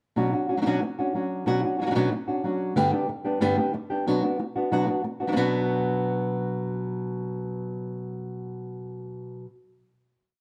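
Fiery and dramatic, this brief flamenco piece in B minor moves at a brisk 185 BPM, with a solo nylon-string guitar sounding dark and fresh-stringed, placed small and up front, mixing thumb-plucked notes with rasgueado strumming and taps on the top. The groove moves from Bmadd9 through G to Bm before settling on a final chord at 5.4 seconds. Close, detailed miking captures the guitar inside a moderate large studio reverb.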